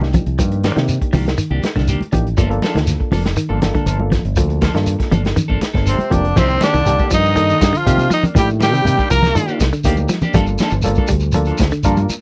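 Driving and hypnotic, this afrobeat cut in C dorian moves at 120 BPM over a straight 4/4, with a muffled, lo-fi vintage drum kit and a round, punchy fingered bass up front, damped congas in the background alongside a grainy shekere, and a dark, picked clean electric guitar with phaser adding stabs. A barky, reedy electric piano with overdrive and fast tremolo holds down accompaniment, while a hollow-body semi-hollow guitar plays warm, fingered arpeggios in the background over a Cm9 to Gm9 vamp. At 5.9 seconds a raspy, gritty tenor saxophone takes the melody, shadowed by a clear trumpet and a bright trombone section in the background, and the horns drop out at 9.6 seconds in this dry, close 1970s-style studio sound.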